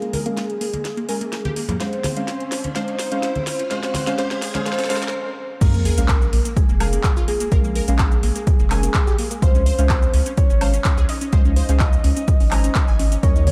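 Driving and bittersweet, this progressive house passage is cut from a longer piece, moving between Bbm7 and Dbmaj7 in a steady 4/4 with a dark, softly reverberant production. From the start, a full, round octave-layered synth lead carries the melody with chorus, phaser, vibrato and dub echo, while a lush, detuned unison pluck spins arpeggios in the background through a cassette-tape tint and delay, and a deep, warbling chord stab with a vintage feel fires over a filter sweep. A deep house kit with a fat snare, metallic hats, cabasa, woodblock, handclaps and crash plays a build-up fill, joined by ringing, hard-handed congas and a background riser. After a brief stop, the drop lands at 5.6 seconds with an impact: a punchy, overdriven electronic kick and a round, nasal analog bass pumping under sidechain push forward, and a very quiet, gentle pluck shares the lead's register as a second line. 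The bass and kick sit loudest in the mix, giving the drop its weight beneath the hazier synth layers.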